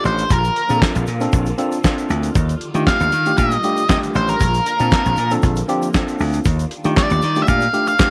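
A dark, fuzzed-out lead guitar with slapback echo carries the melody from the start of this slick, funky early-eighties boogie funk excerpt, over a worn, slightly out-of-tune electric piano, a faint swirling phased string machine, a punchy slap bass that drops out at 7.7 seconds, a grainy shaker in the background, and a dry, damped drum kit with fat snare, tight kick, hi-hat and handclaps, all cycling between Bbmaj7 and Ebmaj9#11 in light studio reverb.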